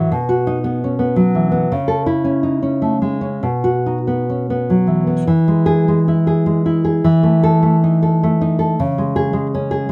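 In a triple metre with rubato, moving between 95 and 112 BPM, this tender, nostalgic romantic piece for solo classical guitar sits in E major and is tuned slightly below standard pitch, at A4 = 437 Hz. The nylon-string guitar plays alone and up front from B2 to A4, its dark, full-bodied, thumb-plucked tone caught by close, detailed microphones with light reverb. Cut from a longer work, the passage moves from B and A/C# into a second section at 5.3 seconds that passes through E and Esus4 before arriving on C#5 at 8.8 seconds.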